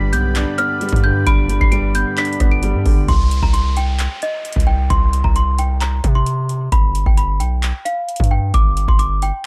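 A dry, gritty hardware recording carries this dark, brooding half-time trap excerpt, where a worn, slightly out-of-tune celesta plays a delicate, bell-like melody over a saturated, heavy 808-style bass and a booming analog drum machine with deep kick, metallic hats, handclaps and rim clicks, both up front. In the opening, a mellow concert grand piano and a smooth, nasal analog pad with chorus sit underneath, and an eerie, warbling FM synth bell with chorus and analog delay adds a brief second line at 1.3 seconds. At 3.1 seconds the piano and pad stop and an electronic downlifter enters, leaving the celesta, bass and drums to carry the rest.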